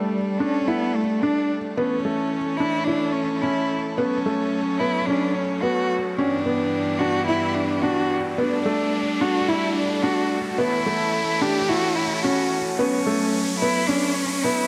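Piano and strings electronica with a cinematic, melancholic mood, this excerpt builds steadily over 14.7 seconds as a rich, smooth bowed cello carries the melody up front, set against the dark, airy sustained chords of a string quartet and a felt-muted upright piano riff with audible action noise and tape echo. An electronic riser enters at 3.3 seconds beneath the harmony of Gsus2, A, F#m and Em7/G, and a lush hall reverb gives the intimate chamber sound a spacious depth.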